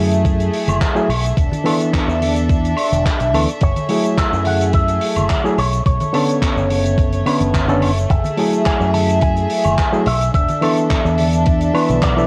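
A home cassette recording with a moderate small-room reverb gives this nu-disco excerpt a soft, slightly worn finish, and the mood is groovy and cosmic at 107 BPM in a straight 4/4, in F# minor. A gritty, barky overdriven reed electric piano carries the accompaniment, while a warm violin section holds floating, soft-attack sustained chords; both, along with a bright, punchy fingered bass run through an envelope filter, pump with sidechain compression. The rhythm rests on a thumpy, sampler-style electronic kick sitting loudest in the mix, a tight, dry, airy funk kit with handclaps, hi-hat, shaker and woodblock, and very quiet congas played with soft hands. At 3.6 s a dark, clean electric guitar with an envelope filter and tape echo enters with the melody in a high register. The harmony cycles through F#m9, E7sus4 and Bm9.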